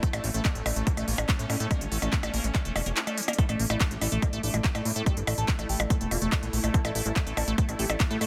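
An A5 chord opens this driving, hypnotic psychedelic trance excerpt at 143 BPM in A major, where a punchy, up-front kick and a techno kit of handclaps, smooth hi-hats and percussion blips drive under a thick, saturated analog bass, a squelchy acid bass riff with phaser, 12-bit grit, delay and sidechain pumping, a tense swarming drone of sustained chords, and a very quiet, blurred granular cloud pad. The kick drops out from 3.0 to 3.4 seconds around a drum fill, and at 3.4 seconds a gritty, screaming, guitar-like synth lead enters in the background with chorus, phaser, delay and pumping. The dense, heavily limited master sits in a digital ambience.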